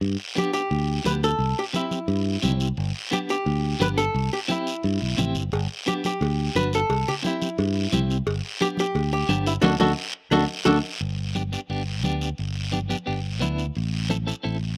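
A straight, danceable cumbia groove in four rides on a raspy guiro, bright damped congas and an up-front fingered electric bass, while a dark, compressed archtop guitar carries the joyful melody over a warm, clean electric guitar pulsing with tremolo, and ringing cowbell and timbales join in the background from 5.5 s until a band accent and drum fill near 10.0 s lead into a closing section, all captured close and dry in this short cut from a longer piece.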